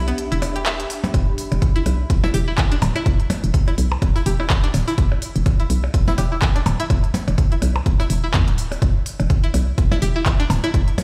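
Clinical and sparse, this minimal techno cut opens on a brief break where an ethereal, detuned pad with ensemble chorus and built-in reverb hangs over a hollow, bouncy FM bass, a twangy, warbling resonator pluck riff steeped in chorus, phaser and dub echo, overdriven handclaps with smooth hi-hats, and tape-warm percussion blips, before a punchy analog kick lands up front at 1.1 seconds for the drop, with the bass, pad and pluck pumping under sidechain in a stone room reverb as if played on a big sound system in a bare space.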